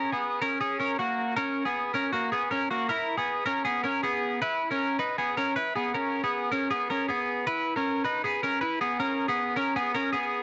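Restless and wistful, this short indie pop excerpt in a straight 4/4 features a lone twelve-string electric guitar, picked and clean, sitting up front with a bright, twangy, compressed edge. Cassette tape softens its sheen in a home recording with light reverb and a muffled top end, as the harmony moves from A#m7 to C#m7 at 2.9 seconds before the cut at 10.4 seconds.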